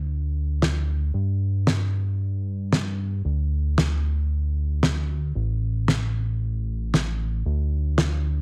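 A fat, thick detuned sawtooth analog bass with a filter sweep, fast attack and sustained notes opens this sensual, cosmic nu-disco excerpt at 114 BPM in straight 4/4, sitting up front between A1 and G2, joined at 0.6 s by a dry, dark, smooth acoustic snare with a rolled-off top, also up front, all in a light reverb.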